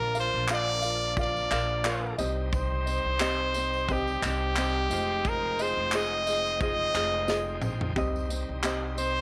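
Tender and reflective, this short acoustic pop excerpt in C minor moves at 88 BPM with a light sixteenth-note swing, as a brilliant, forceful trumpet carries the melody up front over a mellow, thumb-plucked ukulele and a woody, thumpy pizzicato upright bass. A bright tonewheel organ sits in the background with light overdrive and a fast rotary speaker, while a modern studio drum kit with a punchy kick, handclaps, toms and a rolled-off top enters at 0.1 seconds, joined by a jingly, close tambourine at 0.2 seconds. The chords move from Bb to Cm and Fm7 in a small room, with a drum fill at 7.3 seconds leading back to Cm at 8.0 seconds.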